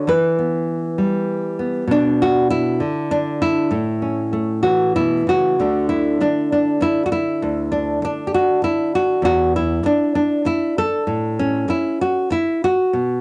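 Hopeful and gentle, this short folk passage, cut from a longer piece, features a solo fingerpicked nylon-string guitar, full-bodied and deep in classical tone with audible finger squeak, sitting up front in a modest small-room ambience with a homemade cassette character as it sways in a rubato three-beat lilt through Em, Bm and A before a second passage from 5.6 s moves through D5 and E5 shapes and settles on A.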